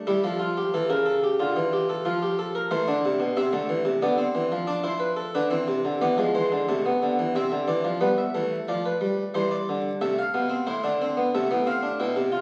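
A lone harpsichord opens this solemn, serious excerpt of a baroque-style three-part fugue, its plucked, round Italian-style tone sitting close and up front amid the crackle of a very old 78 rpm record. At a straight 91 BPM in 4/4, the voices move from A7 and Dm through E7 to Am, then shift at 8.0 s toward G7, C and Fmaj7/A before the cut at 12.4 s. A recital hall's reverb surrounds the full, single-strung instrument with a sense of space.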